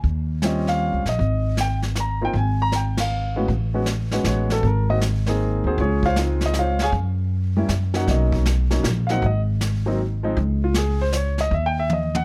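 Jazz piano trio in a sophisticated, playful swinging 3/4 at 157 BPM in Ab major, where a woody pizzicato upright bass and a brushed drum kit with dark cymbals and a boomy kick set the pulse before a natural, deep-bassed concert grand piano enters at 0.4 seconds with the melody, all in a dry, close sound marked by a band accent at 2.9 seconds and a closing drum fill at 11.9 seconds.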